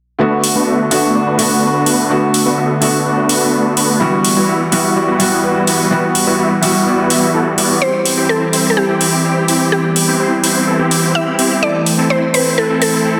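Metallic, layered electronic hi-hats sit up front in a straight 4/4 at 126 BPM, driving this euphoric, emotional festival progressive house excerpt through chords of D6, Emadd9 and C. A huge, bright supersaw riff runs through a low-pass filter and dub echo over a thick, slow-attack unison pad with chorus, while a soft felt-muted upright piano with audible action noise and dub echo adds intimate accompaniment until 7.8 s. At that point a woody, round mallet-like synth pluck with chorus and echo takes the melody, all within a lush hall reverb and a dense, heavily limited modern master.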